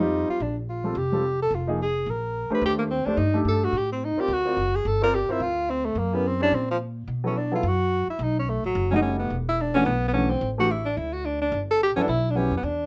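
Small-group swing and bop jazz at a late-night, swinging 216 BPM, cut from a longer piece, with a warm, smooth-topped tenor saxophone carrying the melody up front with vibrato over deep-bassed concert grand piano accompaniment and a woody, bright pizzicato upright bass strung with steel, while a clear alto saxophone with subtone, vibrato and scooped notes adds a brief second line at 2.8 seconds and returns from 8.9 seconds, after the music moves into B minor at 7.1 seconds, all in a moderate studio ambience.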